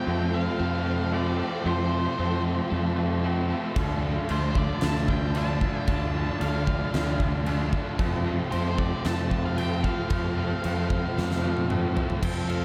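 Shoegaze and dream pop rock in F major at 114 BPM, this dreamy, blissful passage is cut from a longer piece and drenched in a huge ambient reverb that melts its layers together. A dark, octave-fuzz lead guitar carries the melody through analog delay, while a vintage string machine with a cello voice holds mellow, slow-attack chords in the background, colored by phaser and ensemble chorus. Underneath, a crunchy overdriven guitar and a twangy clean guitar with reverse reverb play riffs, and a very quiet, bright twelve-string electric guitar adds picked arpeggios. A round, punchy fuzz bass sits up front from the start, and a huge arena drum kit with a fat snare and punchy kick crashes in at 3.8 seconds. The harmony moves from Fadd9 to Dm and back to Fadd9, and a drum fill at 11.2 seconds closes the passage.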